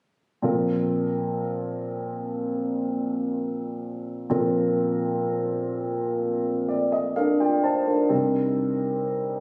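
Emotional and tender, this short pop excerpt cut from a longer piece features a solo baby grand piano at a slow 63 BPM in straight 4/4, in B-flat major and tuned slightly above standard pitch. The piano sounds warm and worn, with long sustain, and sits up front, carrying delay across a range from Bb2 to A5. It plays from 0.4 to 9.4 seconds, resting on a Bbsus2 chord before moving to Cm7 at 8.1 seconds. A piano fill from 6.2 to 8.1 seconds leads into that change. The sound has a moderate, lush hall reverb and the character of a phone recording made in the room, finished with compression.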